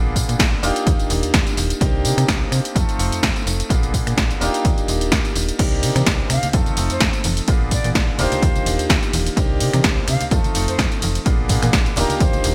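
Bright 1980s-style digital production with light reverb and a small room ambience gives this short cut from a longer filtered disco house track a nostalgic, groovy glow, with a gentle swing on the sixteenths. A punchy, tape-warm electronic kick anchors the groove alongside an up-front analog drum machine playing snare, hi-hat, ride, crash, finger snaps and tambourine, the kit treated with gated reverb and its hats, percussion and cymbals pumping against the sidechain. A snappy FM bass with a metallic, fast attack and a decaying tone pumps beneath a brilliant concert grand piano, whose open, long-sustaining chords carry a phaser, 12-bit sampler grit and sidechain pumping through a jazzy cycle of Bb7b9, Ebmaj9, Cm9 and F7. Close, hard-handed maracas and congas join in the background at 5.6 seconds. At 6.3 seconds an airy silver concert flute with vibrato and a soft attack enters as the melody, set back in the mix with digital delay and its own sidechain pumping.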